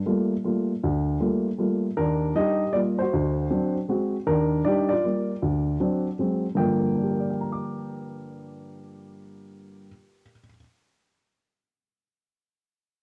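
A home cassette recording with light reverb and small-room ambience carries this moody, swinging jazz waltz in G minor at 157 BPM, where a dark, mellow baby grand piano plays alone from 0.1 to 10.6 seconds, sitting up front with intimate, short-sustained notes, audible key action and its own cassette-tape color, as it moves through Gm9, Ebmaj7, Gm7, D7 and Ab7 harmonies in this fragment cut from a longer piece.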